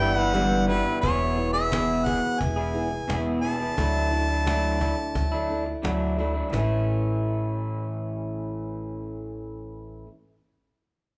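A live-in-one-room band sound with moderate large-studio reverb carries this hopeful, open-road folk and heartland rock excerpt in a straight 4/4, where an up-front harmonica with a smooth top sings the melody until 5.8 seconds over picked, full-bodied acoustic guitar with finger squeak, a dark, slightly broken-up electric guitar riff through a small old amp, woody pizzicato upright bass and a snappy cajon struck with hard hands, while a gritty overdriven reed electric piano and a breathing pedal harmonium sound very quietly only in the opening second.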